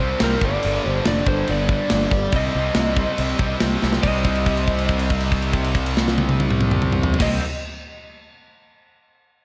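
Aggressive and heavy, this short hard rock cut from a longer piece drives at 141 BPM in C minor. A twangy, slightly broken-up lead guitar with slapback echo carries the melody over three distorted rhythm guitars in the background, one scooped and one double-tracked, while a fuzz-laden, punchy picked bass sits up front beside a tight metal drum kit with bright cymbals that enters at 0.2 seconds. A drum fill at 3.8 seconds leads into a held note from 4.0 seconds, all set in a big arena sound with moderate stage reverb.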